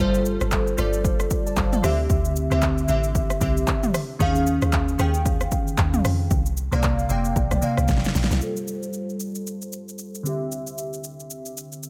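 Glassy, chorused digital keys and a deep, round log drum bass open this hypnotic amapiano excerpt, joined almost at once by a punchy, overdriven deep house kit of kick, fat snare, handclaps, rim clicks, hi-hat, shaker and toms, all swinging over suspended ninth chords in a dry mix, until a drum fill at 7.9 s leads into a new section at 8.4 s where the bass stops and a filter sweep plays on the keys.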